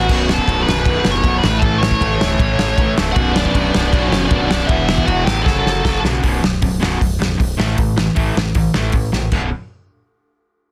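A straight 4/4 punk rock beat drives this urgent, aggressive excerpt, with a loose indie drum kit sitting up front with a tight kick, medium-tuned snare and rolled-off top, and a drum fill at 5.5 seconds, while a growling, overdriven picked bass holds the low end. Two bright, picked distorted electric guitars carry the riff, one compressed and the other in the background, joined until 6.2 seconds by a very quiet, double-tracked biting overdriven guitar. Above them a dark, high-gain lead guitar plays the melody up front until 6.0 seconds, all in a dry, dense and heavily limited modern mix.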